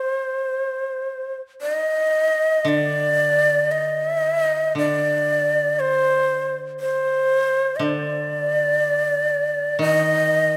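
A breathy, close-miked shakuhachi carries a vibrato-laden, tongued melody in the C hirajoshi scale up front from the start of this meditative, austere excerpt of Japanese chamber music, drifting rubato at around 55-61 BPM in 4/4 before a dry, woody koto plucked with fingerpicks joins low in the background at 2.6 seconds, all set in a moderate concert hall reverb.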